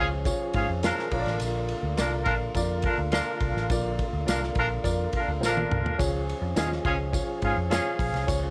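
A straight 4/4 groove from an acoustic country-style drum kit, with a tight kick, medium-tuned snare and dark cymbals, kicks in at 0.3 seconds alongside a jingly tambourine, driving this danceable, uptempo 1960s-style soul passage and breaking into a short fill at 5.4 seconds. Underneath, a round, punchy foam-muted picked electric bass and a woody, mellow upright piano carry the accompaniment, while a tonewheel organ holds lightly overdriven sustained chords with vibrato, key click and a stopped rotary speaker. Up front, a clear vintage horn section with light vibrato plays a jazz-style second line over a small room ambience.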